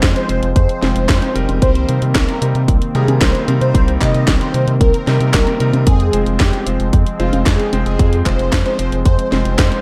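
A thick, detuned sawtooth unison lead with ensemble chorus and digital delay carries the melody through this danceable, bittersweet italo disco excerpt in F minor at 113 BPM, over smooth, warbling chorused pad chords, clangy vintage electric grand piano stabs, a round, deep analog bass, a punchy electronic kick, and a house kit of congas, handclaps, hi-hat and a cracking snare treated with gated reverb, all moving between Fm and Cm7 in a digital ambience.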